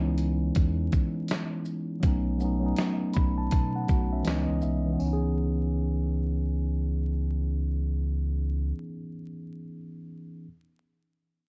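Swung sixteenths drive this reflective, nostalgic lo-fi hip hop fragment, where a gritty, compressed sampler-style kit of thumpy kick, fat snare, hi-hat and shaker plays until 4.8 seconds. A jingly tambourine sits faintly in the background, and a deep, full sine-and-triangle sub bass with its octave holds up front until 8.7 seconds. A mellow tine electric piano, heard through its built-in speakers with cassette tape and low-pass filtering, moves from C#m9 to B9 and back, set in dark production with light reverb and vinyl crackle.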